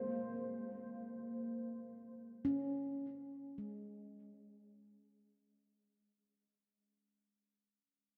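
Ringing, stainless-steel handpan arpeggios played with the fingertips sit up front in this peaceful, meditative ambient fragment from a longer piece, spanning Ab3 to C5 and settling on an Absus4 chord at 2.3 seconds, while a diffuse ambient delay and a huge, dark reverb with an 8.3-second tail wrap the warm tone as it fades out from the start until 5.6 seconds.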